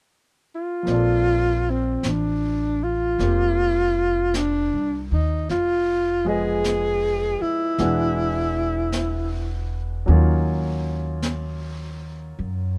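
A breathy, close-miked alto saxophone sings a romantic, intimate jazz ballad melody with vibrato from 0.6 s to 9.7 s over a warm baby grand piano, a woody pizzicato upright bass up front and a brushed drum kit in a small room, and the dry, swung excerpt continues with the piano, bass and drums until 12.8 s.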